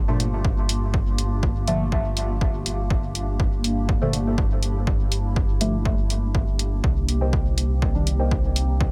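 Dub techno with a hazy, cavernous mood, this short excerpt moves in a straight 4/4 pulse over a Gm7 chord that shifts to Cm7 at 6.8 seconds. A punchy, tape-warm electronic kick and an analog hi-hat sit up front with a small-room character, while a round, deep analog bass with a dark, ring-modulated edge holds the low end under sidechain pumping. Soft, wave-folded chord stabs enter at 0.1 seconds, colored by chorus, phaser, cassette tape saturation and dub echo, and a blurred granular cloud pad with its own built-in reverb drifts behind them, also breathing with the sidechain. Near the end, a warbling, lo-fi, detuned pluck with a noise layer and filter sweep slips in at 7.2 seconds for a brief riff through subtle chorus and dub echo. Apart from the effects on individual parts, the overall sound is fairly dry.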